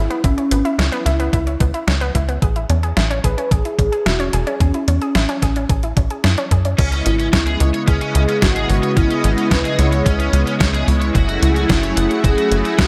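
A straight 4/4 pulse at 110 BPM drives this nocturnal, moody synthwave excerpt in C# minor, anchored by a thumpy, overdriven electronic kick and a detuned 8-bit drum machine supplying crash, hi-hat and a medium-tuned snare in a small room. Beneath it, a tight, punchy sequencer bass blends sawtooth and square waves with a plucky filter and a fast, decaying attack, sitting up front in the mix. A velvety lead carries the melody throughout, its detuned unison sawtooth and triangle tones smoothed by chorus, delay and vibrato, while a round, nasal, wave-folded analog pluck spins arpeggios until 6.7 seconds. At 6.8 seconds a bright, detuned analog pad with a slow attack and sidechain pumping arrives alongside a cranked, picked electric guitar riff soaked in overdrive, ensemble chorus and delay. The harmony moves from C#m7 to Amaj7, then returns to C#m7 before reaching F#m7, and a moderate plate reverb gives the mix a dreamy haze.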